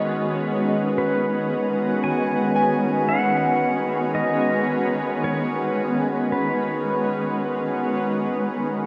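In a straight 4/4 at 56 BPM, this serene, weightless ambient fragment in B major rests on a B6 chord, with a shimmering, ethereal pad of detuned, octave-up sustained chords up front, a reedy, breathing pedal harmonium drone, and muted, felt-like synth keys whose soft arpeggios sit in the background under chorus, tremolo and delay, while a clean, twangy pedal steel guitar with slide and volume swells carries a delayed melody until 7.9 s, all blended in a dreamy mix soaked in plate reverb.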